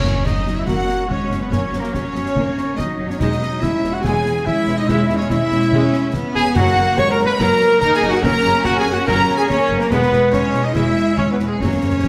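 Heroic and adventurous, this brief cut from a cinematic adventure film score moves at 143 BPM in 4/4 in F# mixolydian, with a lush, expressive symphonic violin section carrying the melody while a clear studio violin section, pure-toned flute, and very quiet oboe and clarinet add second lines. Underneath, a rich, distant viola section accompanies, a mellow vintage French horn section holds sustained chords, a mellow trumpet adds stabs, and bowed cellos and double basses anchor the bass as the harmony moves through F#, C#m/E, F# and E. Concert snare, bass drum and bright clash cymbals sit close and dry in the background, very quiet calf-headed timpani strike at 0.0, 6.6 and 11.6 seconds with a closing fill, and a recital hall reverb gives the orchestra its space.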